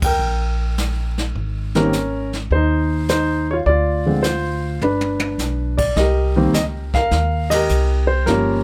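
Jazz piano trio in a playful, swinging 4/4, heard as a short excerpt cut from a longer piece. The grand piano carries the melody up front with a warm, intimate tone, short sustain and audible action noise that keeps it natural and close. Beneath it, the pizzicato upright bass sounds woody, warm and up front, its steel strings giving the low line clear definition. The brushed drum kit sits further back in a small, natural-sounding room, pairing a medium-tuned snare with a boomy kick. The trio hits a band accent at 0.0 seconds and another at 7.4 seconds, with a brief drum fill at 4.8 seconds, while the harmony moves from Eb through Ab, Dm7 and G to Cm7. Light reverb gives the whole trio a gentle sense of space.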